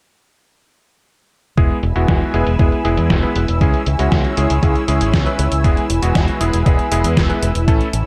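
A lightly reverberant excerpt of playful, danceable Italo disco at 118 BPM in E major, where a thumpy, tape-warm electronic kick and a detuned, tape-warm 8-bit drum machine with filtered hi-hats and a gated-reverb snare drive a straight 4/4 from 1.6 seconds alongside a bright, up-front fingered electric bass with an envelope filter and a filter sweep, clangy electric grand piano stabs with tape echo, and a lush, detuned sawtooth unison pad with chorus and phaser holding sustained chords over E, C#m and back to E.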